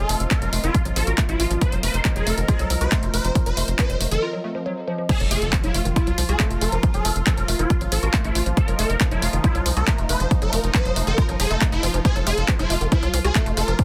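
A dense, heavily limited and dry mix opens this alien, driving psychedelic trance excerpt at 138 BPM in 4/4, tuned to A4 = 438 Hz. A tight, punchy sawtooth sequencer bass and a heavy, tape-coloured electronic kick sit up front beneath a techno kit of crash, handclaps and warm hats re-recorded in a small room. A swarming, detuned rave lead with a pitch-rise attack carries the melody through chorus, phaser, cassette grit and tape echo, while a woody wave-folded pluck riff, a bubbling resonant texture of random filter steps and an ethereal, airy pad in the background all pump against the kick; the pad stops at 4.2 s for a short break, and the drop arrives at 5.1 s with a very quiet electronic impact.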